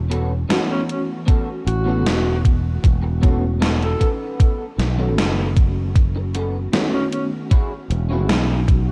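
Vaporwave in A lydian at a slow 77 BPM, this nostalgic, woozy fragment pairs a lush, detuned FM electric piano and soft pad, shimmering with tremolo, chorus and tape echo, with a growly, up-front fretless bass, a slightly broken-up picked electric guitar riff carrying chorus and 12-bit sampler grit, and a gated 80s drum machine of hi-hat and snare drenched in gated reverb, while a smooth alto saxophone sings a vibrato-laced melody from 0.7 seconds and a thumpy electronic kick drops in at 1.3 seconds, everything bathed in a hazy cassette-tape ambience as the chords drift from A69 to B9 to E69.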